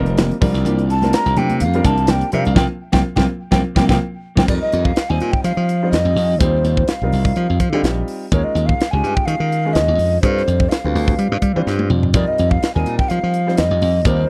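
Intense and driving, this electric jazz fusion excerpt moves at 125 BPM in F dorian with a light 16th-note swing, as a breathy, hollow metal flute carries the melody from 0.9 seconds with vibrato and tongued chiff, set at a distance. A glassy, punchy slap bass and a crisp acoustic drum kit with bright cymbals and a high-tuned snare sit up front, while a clear concert grand piano with short sustain plays sus4 ninth chords throughout. A dark, very quiet electric guitar adds clean stabs and saturated congas play in the background until a band accent and drum fill close the opening section at 4.5 seconds, all captured in a dry, close 1970s-style studio sound.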